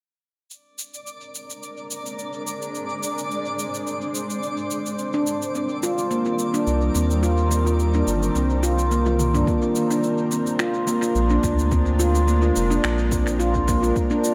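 A deep house drum kit of cabasa, finger snaps and toms, tape-tinged and washed in tape echo, opens this peaceful organic downtempo excerpt at 107 BPM, with a light 16th-note swing in Bb mixolydian. It is soon joined by a cloudy, detuned granular pad under sidechain pumping and a twinkling, sparkling FM texture with an octave-up shimmer. At 5.1 s an up-front stainless steel handpan enters with mellow, ringing arpeggios through a low-pass filter and tape echo, a round sine sub bass follows with its own pumping, and the harmony moves from Bb9 to Cm7 before a drum fill brings a deep, layered electronic kick at 9.5 s as the sparkle drops out, all set in an echo-heavy plate reverb.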